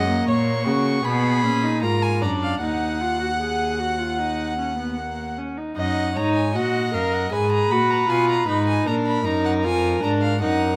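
A baroque-style fugue for string quartet in Eb minor, this short cut from a longer piece moves at 77 BPM in a straight 4/4, contemplative yet driving. All four bowed players use period-style gut strings and sound reedy. The first violin carries the melody high between F5 and Db6 with a rich, nasal voice, while the second violin traces its line from Gb4 to Gb5 in a darker, more distant tone. Up front, the viola fills in the accompaniment with a smooth top, and the cello anchors the bass from Eb2 to Db3 with a light vibrato. The harmony passes from Gb through Bmaj13 and Bb7/Ab to Ebm, then a second section from 5.8 seconds moves through Ebm/Gb and Abm to close on Bb. Close, detailed microphones and light reverb keep every line clear.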